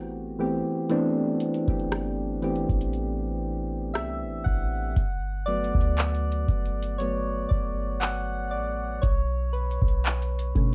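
Soft, round electric-piano-like synth keys with a mellow chorus shimmer sit up front in this tender, romantic slice of contemporary R&B, moving from Am7 to Gmaj7 and on to Bm7 and taking a solo from 5.0 seconds. A clean, deep 808-style bass with a sine-like tone supports them from the start. A booming, tape-warm analog drum machine enters at 0.9 seconds with a deep kick, metallic hi-hats, handclaps and rim clicks, all set in light reverb within a dark, warm production.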